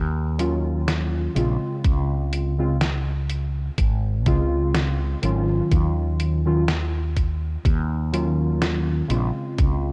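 A slow 62 BPM pulse in 4/4 sways with a light sixteenth-note swing, carried by a detuned 8-bit drum machine's hi-hat and medium-tuned snare from 0.4 seconds, with a thumpy electronic kick joining up front at 1.8 seconds. This woozy, melancholic vaporwave fragment, cut from a longer piece, sits in Eb dorian and drifts from Ebm9 to Dbmaj7 and back to Ebm9. A dark, round fretless electric bass opens the passage at 0.0 seconds, punchy and direct, its low line given a tube-saturated edge. Warbling lo-fi synth keys blend square, sawtooth and triangle tones into a nostalgic, detuned sound with fast-attack, decaying notes, a filter sweep, subtle chorus and tape echo. The drum machine's gated and studio reverb, the kick's own studio reverb, and a cassette-tape digital ambience wrap the whole in a hazy, faded atmosphere.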